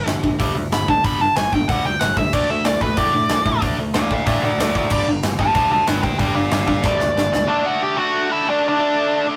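A nasal, dark lead guitar with a parked wah and overdrive carries a solo up front from the start of this rowdy, rebellious punk rock excerpt in D major at 186 BPM, over a bright, double-tracked distorted rhythm guitar riffing on G5, D5 and G5 power chords. A tight metal drum kit with bright cymbals and a tight kick drives the straight 4/4 feel, while a growly overdriven picked bass sits in the background, until a drum fill at 6.8 seconds leads both bass and drums to stop at 7.4 seconds. The two guitars ring on alone over a D chord to close, all captured in a rough rehearsal-room recording with moderate booth ambience.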